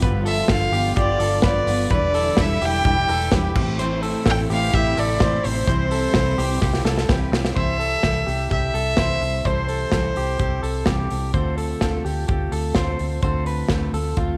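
Bright and nostalgic, this jangly indie pop cut moves at 127 BPM in a straight 4/4 in C major, with a punchy, up-front acoustic drum kit with bright cymbals, a dark, round, foam-muted fingered electric bass, a full-bodied fingerpicked jumbo steel-string acoustic guitar and twangy, slightly broken-up lo-fi electric guitar arpeggios running throughout. An up-front violin with a reedy gut-string tone and light vibrato carries the melody from 0.3 to 11.1 seconds, colored by slapback echo, while a lush, woody string section holds sustained chords in the background until 7.6 seconds. A drum fill leads into the second section at 7.6 seconds as the harmony shifts from G7, Em7, Am and Cmaj7 to C6 and Dm7, all set in light reverb and small room ambience.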